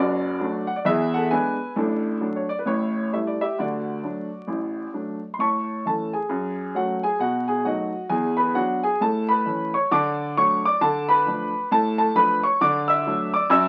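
Playful and exuberant, this stride piano jazz excerpt swings at 133 BPM in 4/4 as a solo grand piano, smooth, vintage and up front, ranges from deep bass to high treble, moving from D major into A major at 5.4 seconds, all heard through a moderate studio reverb and the crackle of a very old 78 rpm record.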